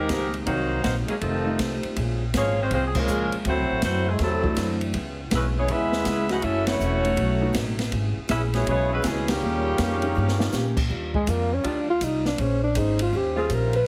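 Joyful and energetic, this big band swing excerpt moves at 161 BPM in 4/4 with a swing feel. A clear, up-front saxophone section carries the melody over a second line from a warm trombone section in the background. Beneath them, a pizzicato upright bass with a woody tone anchors the bottom, while a concert grand piano with audible action noise and a boxy, picked archtop guitar with finger squeak fill in the accompaniment. An open jazz drum kit with dark cymbals and a boomy kick drives the band, with full-band accents at 2.9, 6.6 and 9.2 seconds and a drum fill leading into a dark alto saxophone solo at 10.9 seconds, its scooped notes and vibrato set up front as a bright saxophone section enters with sustained chords. The whole excerpt sits in light reverb with a heavily compressed, radio-like sound, and the harmony moves through rich extended chords before passing through Ebmaj9, Bbm9 and Eb13 under the solo.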